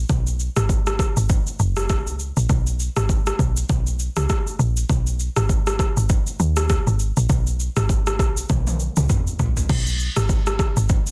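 A swung sixteenth-note groove in 4/4 at 100 BPM drives this breezy, romantic afrobeats excerpt in B major, tuned to A4 = 436 Hz. A woody log drum bass opens at the very start and holds the low end between F#1 and D#2, its punchy FM tone carrying a noise layer, a fast attack and a mellow decay. An electronic, layered deep house kit joins a moment later at 0.1 seconds, with a deep kick, rim click, shaker, toms and crash cymbal, all overdriven and re-recorded in a large room. Both parts sit up front at an even level. A drum fill beginning at 8.5 seconds leads into a new section at 9.7 seconds. The mix is dry overall, with a dense, heavily limited modern master.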